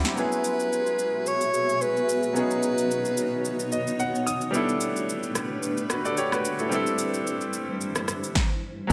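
A small-room sheen with light reverb frames this deep, late-night amapiano passage at 110 BPM in F# minor, where a clear, intimate grand piano with audible action noise and long sustain plays chords and a fill around 3.4 s, a cloudy, detuned granular pad pumps under sidechain, a punchy, layered deep house kit of kick, rim click, shaker and snare swings up front, and a vibrato-rich alto saxophone with tape echo sings the melody from 0.2 to 4.2 s over sus4 ninth chords.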